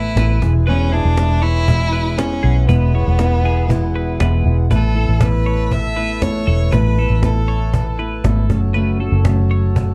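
A dry, dark production frames this sunny, easy-going acoustic pop excerpt in A major at 119 BPM, where a round, punchy muted electric bass sits up front beneath a snappy cajon, thumb-plucked nylon-string guitar, bright twangy twelve-string electric arpeggios, and a reedy harmonium breathing in the background, while a distant, focused bowed violin carries the vibrato melody until 8.0 seconds as the chords move from E to Asus2 at 4.7 seconds and F#m at 8.5 seconds.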